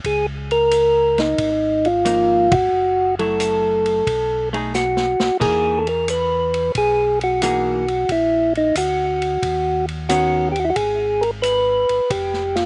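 Dry, close sound with a dulled top end frames this smoky, late-night soul jazz organ trio in G# minor at 90 BPM with a swung feel: a mellow tonewheel organ with key click carries the low bass line through a slow rotary speaker, the band hits an accent at 2.4 seconds and a gritty vintage drum kit with dark cymbals and a punchy kick adds a later fill, an up-front percussive organ with third harmonic percussion plays the melody with slapback echo, and a clean, compressed hollow-body jazz guitar comps from 2.1 to 10.5 seconds.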